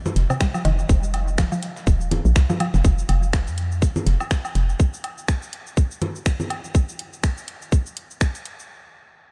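A tight, up-front electronic kick drives this sparse, cool minimal techno cut at 123 BPM in 4/4, with a 57% swing on the sixteenths giving the groove a loose shuffle. A hollow, knocking FM bass sits up front beside it from the opening through 4.7 seconds, dark and bouncy with a fast attack, tube saturation and sidechain pumping, moving between Eb1 and F2 over an F chord. A mallet-like synth pluck adds a woody, round riff between C3 and G3, chorused and pumping, with a diffuse ambient delay trailing its short decay until 2.6 seconds. A garage kit of cabasa, finger snaps and metallic hi-hats runs through the whole fragment. Congas and woodblock carry tape echo and a tape-warm tone. Beneath them, a very quiet, gritty sampler-style kit of hi-hat and medium-tuned snare is re-recorded in a large room. Small room ambience and light reverb keep the mix close, as this drop section cuts off at 8.7 seconds, clipped from a longer piece.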